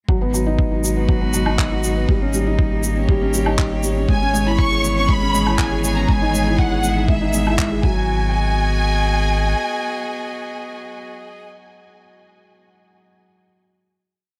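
A felt-muted upright piano with audible action noise plays an eight-step arpeggiated riff through digital delay in this cinematic, intimate piano-and-strings electronica piece, over a muffled four-on-the-floor electronic kick, a distant shaker, woodblock and handclaps, a deep sine sub bass and a rich string quartet's slowly shifting chords, both with sidechain pumping, while a lush, up-front violin section carries a motif-based melody from 4.1 seconds, the drums stop near 7.9 seconds, and the piano rings on through a final chord to 14.4 seconds.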